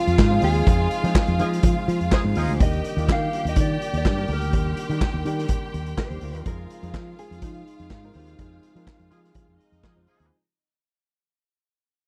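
A punchy vintage drum kit anchors this glamorous, joyful disco excerpt, sitting up front with a pumping small-room sound, a medium-tuned snare, handclaps, hi-hat and a rolled-off top. A warm fingered electric bass sits just as close, played direct and amped, while a dark, clean, compressed electric guitar carries the melody through a tape echo. Behind it, a lush, distant studio string section adds a focused, bowed second line with vibrato, a dark grand piano gives mellow accompaniment, and a very quiet, flute-like tonewheel organ holds soft chords through a fast rotary speaker. A tight, bright horn section fires pop-style stabs at 1.4 seconds and again at 9.1 seconds, in step with full-band accents. The harmony moves from Fm7 to Ebmaj7 and back, the room is nearly dry, and the whole passage plays under a fade-out, cut from a longer piece.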